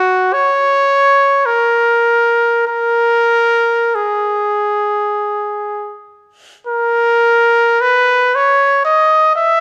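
A clear, classical-style trumpet plays alone and up front through this short, meditative and mournful cut from a longer classical piece, moving freely in rubato triple time between roughly 34 and 60 BPM. Its line stays between F#4 and E5, tuned slightly above standard pitch at A4 = 441 Hz. A recital hall's lingering reverb, with a decay of 1.8 seconds, surrounds the horn, and the phrase shifts into a new section at 6.7 seconds before ending at 9.6 seconds.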